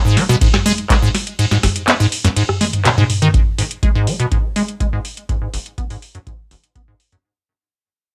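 Hypnotic and trippy, this short cut from a longer acid house track runs at 123 BPM in a straight 4/4, sitting in G# minor. A squelchy, hollow square-wave acid bass drives the riff from the very start, resonant and saturated with a fast, plucky filtered attack that decays, dressed in lush chorus, digital delay and sidechain pumping. A booming analog drum machine arrives at 0.2 seconds with handclaps, metallic hi-hats, ride cymbal, rim clicks, a tonal snare and toms, all dry and up front, while a deep, tape-warm electronic kick that was re-recorded in a large room joins at 0.4 seconds. The opening plays as a drop, with the kick falling out from 1.4 seconds and a drum fill carrying the groove toward the change. From 3.3 seconds the second section brings a filter sweep on the acid bass as the track fades out, all within a light reverb.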